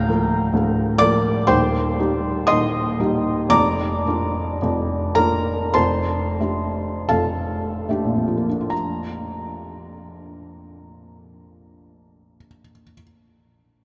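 Nostalgic and serene, this romantic classical nocturne for solo piano unfolds in Bb major at a slow, rubato pace that drifts between 34 and 68 BPM in 4/4, tuned slightly low to A4 = 436 Hz. A felt-muted upright piano carries the whole piece, its soft, mellow tone sitting up front with an intimate closeness, short sustain and audible action noise that lends a hushed, handmade quality. The playing spans from deep D1 bass to Eb6 in the treble, moving through Bb/D, Cm/Eb and Bb/F before settling on an F69 chord. The first passage gradually slows until 8.7 seconds, when the harmony arrives home on Bb and a new section begins, running to 13.8 seconds. The piano sits in a vast, echoing cathedral space whose long reverb tail lingers around the dampened notes, and the recording is cut from a longer piece.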